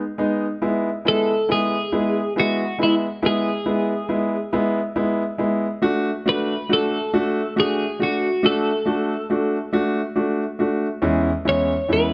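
A moderate concert hall reverb surrounds this tender, romantic pop fragment in a straight 6/8, with a faint mains hum underneath. A warm concert grand piano with deep bass sits up front as accompaniment from the start, moving from B6 through E and D to C#m/E. At 1.1 seconds a bright, twangy twelve-string electric guitar enters with the clean, picked, compressed melody, touched by subtle chorus.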